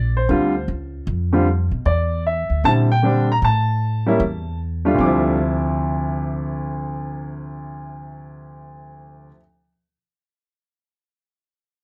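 Cool and swinging, this short jazz excerpt in D minor moves at a brisk 153 BPM in 4/4, its eighth notes carrying a gentle swing. A baby grand piano carries the melody from the very start, ranging from deep low notes up into the high register with a natural, up-front tone. Beside it, a pizzicato upright bass holds down the low end with a woody, steel-strung sound, sitting close and present in the mix. The harmony passes through Dm7, Em7b5 and A5 before settling on a Dm9 as the music shifts into a new section at 5.0 seconds. A light reverb gives the duo a sense of space, and both parts play together until the cut at about 9.4 seconds.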